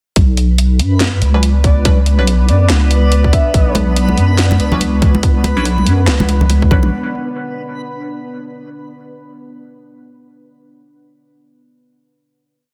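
A deep, wobbling bass sits up front from 0.2 seconds, its long, dark notes soft and touched with chorus, anchoring this brooding, dark piece of deep dubstep with a swung, half-time feel. Beside it, a tight, layered electronic kick and a garage kit of cracking snare, handclaps and bright hi-hats carry the half-time beat, both touched with studio reverb. A reversed, granular texture drifts in behind them on a dreamy held high note, while muted, detuned chord stabs with a filter pluck, phaser and dub echo move one shape in parallel, and a moody pad of sustained, detuned chords settles quietly in the background. A breathy, flute-like lead with vibrato and a vintage warble offers short phrases in the distance until about 3.8 seconds, and thick-skinned congas, close and dry but trailing dub echo, join from 3.7 seconds. The whole piece is one dense, heavily limited drop on a single chord before a final hit closes it at 6.9 seconds.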